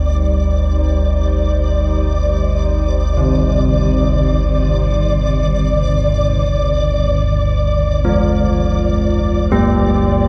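A cavernous, heavily reverberant sound fills this short dark ambient excerpt, which moves in free time and carries a dark, cavernous mood over a single Cm/G chord. Up front sits a deep rumbling drone, its low register given a lush chorus and shaped by a filter sweep across its full length. Behind it, a moody pad of detuned sawtooth voices with a sub octave holds sustained chords under chorus and shimmer reverb, and it fades out over the course of the passage. A flickering, grainy texture hovers on a single high note, its granular shimmer adding restless detail above the low layers. At 3.2 seconds, old church bells enter with clangorous, bronze arpeggios, their bright, beating tones trailing into tape echo and shimmer reverb. The whole piece sits in a vast, echoing space whose long decay blurs every attack into a single brooding wash.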